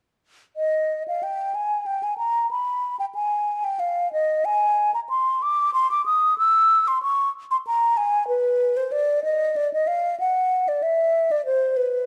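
An airy, hollow concert flute plays alone and up front from 0.6 to 12.1 seconds in this grave, introspective excerpt of a baroque-style classical fantasia in a rubato 3/4, its tongued notes and vibrato ranging from B4 to E6 and ringing into a moderate recital-hall reverb within a dark, warm production.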